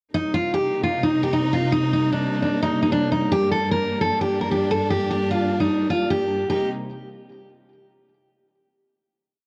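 A picked steel-string acoustic guitar and a lush, bowed symphonic string section open this short, eerie hip hop piece together, the jumbo guitar's bright, full-bodied looping melody sitting up front through a low-pass filter like a sampled hook. Beneath it, the strings hold soft-attack sustained chords with expressive vibrato, moving from Cm7 to Gm in C dorian at 151 BPM with a hard-hitting half-time feel. Both parts stop at 6.7 s, as the piece resolves on a final Cm7 within a dark, warm production and light studio reverb.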